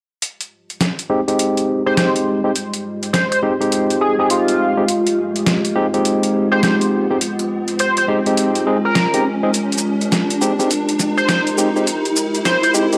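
A compressed, pitched-down boom bap drum kit of hi-hat, shaker and a medium-tuned snare sets a swaggering, playful glitch hop groove at 103 BPM with a 16th-note swing, entering at 0.2 seconds with a gritty, tape-warm punch up front. A barky tine electric piano plays bright stabs through a combo amp with tape echo under a filter sweep, while a warbling, nostalgic square-and-triangle pad holds dark, detuned sustained chords over Fm9 with chorus and sampler grit. An edgy, tearing oscillator-sync lead carries the melody with vibrato from 1.9 seconds, and an electronic riser enters at 2.7 seconds to drive the build-up in this F minor excerpt, all captured as a dry, cassette-textured hardware recording.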